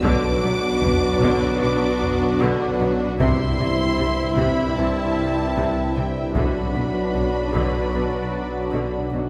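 A straight 4/4 pulse comes from a taiko ensemble struck with heavy sticks. It sits in the background and stops at 8.3 seconds, just before the rest of this brief cut from a longer cinematic cue ends. The mood is tense and brooding: a hybrid orchestral and electronic film score that moves from B minor to C and back to B minor. A lush, focused violin section with vibrato carries the high melody, while a second violin line and a smooth, even viola section fill in beneath it. They are joined by sustained chords from a close-miked French horn section, a distant, roomy trombone section and an evolving, bright synth pad with a slow attack and chorus. The low end pairs a very quiet cello section and an expressive double bass section using portamento with a deep, rumbling detuned saw bass whose tone is beating and saturated, all set back in the room by a wet scoring-stage reverb.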